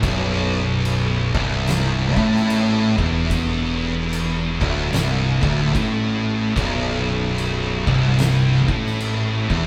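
A slow, swung 4/4 at 74 BPM drives this brooding, sludgy stoner and doom metal cut, which sits on a single B minor chord for its 9.7 seconds and is taken from a longer piece. Two thick fuzz guitars play the low riff, one up front and warm and the other darker in the background, joined by a bright, scooped high-gain guitar that is double-tracked and a growling fingered electric bass with an overdriven, amped bite. Behind them an oversized, low-tuned acoustic drum kit with a punchy kick, fat snare and dark crash cymbals sits in the background of a pumping room, and the whole band plays live together in a stone room with moderate reverb.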